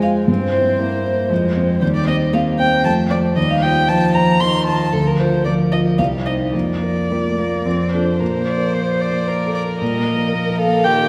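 This quick, graceful and cheerful classical-period movement for piano quartet in Bb major at 115 BPM, a rubato 3/4, begins with all three opening parts together: a mellow baby grand piano with long sustain, a dark, smooth-topped violin and a cello. The violin, played by a single player, carries the melody up front, bowed sul tasto with light vibrato and a soft attack, while the pure, floating cello sounds distant on a second line. At 8.2 s a warm second violin joins with an airy bow as the music turns to a new section, all set in a wet scoring-stage reverb until this fragment of a longer piece breaks off at 11.1 s.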